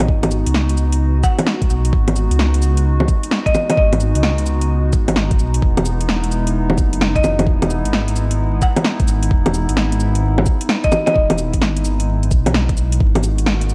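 A swung, shuffling 4/4 groove drives this nocturnal, wistful future garage excerpt, with an up-front electronic kick that knocks from 0.1 s and a garage kit of cracking snare, metallic hi-hats, bongos and cabasa, all given a tape-warm, layered sheen and studio reverb. Underneath, a dark detuned saw bass rumbles and beats deep in the low end, pumping through sidechain compression. A warbling, lo-fi pad sustains nostalgic chords with a slow attack and long release, its chorus and built-in reverb adding haze while it, too, pumps in time. The harmony moves from G#m7 to Emaj7 at 5.6 s before returning to G#m7. Above it all, a buzzing marimba struck with hard mallets plays a bright, woody, airy melody in two phrases, the second beginning at 7.2 s, trailed by tape echo, while vinyl crackle and a light digital ambience coat the whole recording.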